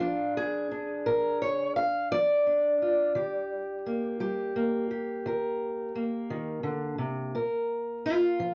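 Heard through worn, warbling cassette tape with drifting pitch, a faint mains hum and a short, wet booth ambience, this brief, rollicking and soulful acoustic country blues fragment features a single dark, boxy parlour steel-string guitar, fingerpicked and up front, moving from Bb to Eb at 3.1 seconds before settling on a Bb5 at 7.3 seconds.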